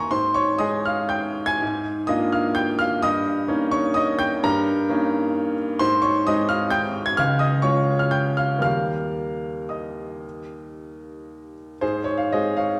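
Playful and sparkling, this short excerpt from a longer classical piano waltz in Ab major moves in a rubato 3/4 between 111 and 137 BPM. A solo baby grand carries the whole piece, up front and intimate, spanning from low Db2 to a high Ab6, its long sustain and audible action noise giving the playing a natural, close presence. The harmony passes through Bb7 and Eb7 over Ab and G, returns to Ab, and moves through Db and Eb before settling back on Ab at 11.8 seconds, all bathed in the wet reverb of a recital hall.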